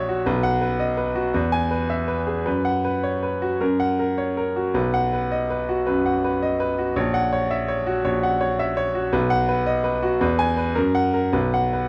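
Rubato and uneven beats pull at a 108 BPM four-four pulse in this heroic, sparkling fragment of a classical virtuoso piano study in B major, where a brilliant, up-front solo grand piano ranging from A#1 to G#5 plays alone through all 11.9 seconds, moving from B through E and F#sus4 to F#7/A# before closing on B5, all set in light reverb within a dark production.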